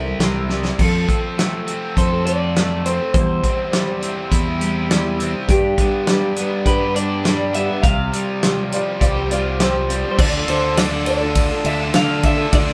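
Reflective and dusty, this folk rock and heartland rock excerpt moves at 102 BPM in D minor, with a bright, twangy electric guitar carrying the melody over a full-bodied acoustic guitar, a crunchy double-tracked overdriven riff, punchy fingered bass and an up-front, natural country drum kit that enters at 0.2 seconds and plays a fill at 0.5 seconds. A very quiet tonewheel organ with slow rotary and key click joins at 5.5 seconds, a woody upright piano adds a brief second line, and a jingly tambourine comes in at 10.2 seconds as the chords settle on D minor. The band sounds like it's playing live together in one room with moderate reverb.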